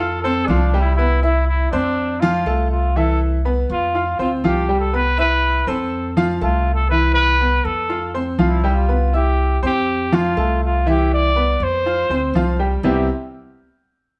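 A sunny, danceable slice of Cuban son and guajira opens with a breathy, whispered trumpet carrying the melody up front, a clear baby grand piano rolling out arpeggios with short sustain, and a woody, thumpy pizzicato upright bass on gut strings, all playing together live in a stone room with moderate reverb over a steady alternation between F and Cmaj7.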